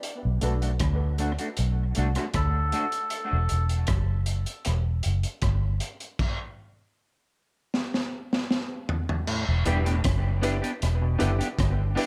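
A crunchy breakbeat drum kit with a punchy kick and high-tuned snare drives this meditative, heavy dub reggae excerpt in E minor at 78 BPM. A round, foam-muted bass sits up front beside it, while a slightly broken-up guitar with lush chorus and tape echo, dark piano stabs with audible action noise, and a brief reedy melodica phrase at 2.4 seconds drift through an echo-heavy mix. The stop at 6.2 seconds gives way to a drum fill, and a stringy overdriven clav enters in the background at 9.3 seconds.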